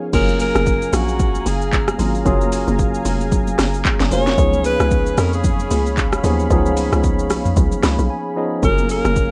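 A clean, direct tine electric piano and a smooth, warbling analog pad with chorus open this soulful, relaxed amapiano excerpt in F# major at 113 BPM, and at 0.1 seconds the full groove drops in with a swung sixteenth-note feel. The electronic afro-pop drum kit sits up front, its deep kick, sharp snare, metallic hats, handclaps, rim clicks, shaker, toms and crash carrying a gritty 12-bit sampler character, while very quiet, high-tuned congas ring in the background. Underneath, a hollow, bouncy log drum bass gives each note a fast attack and a decaying tail. A breathy alto saxophone with vibrato carries the melody through a digital delay over chords that move from F#maj9 to C#7 and back. The electric piano adds a fill at 7.6 seconds and a brief break arrives at 8.1 seconds, in a dry, rough mix that sounds like a home demo.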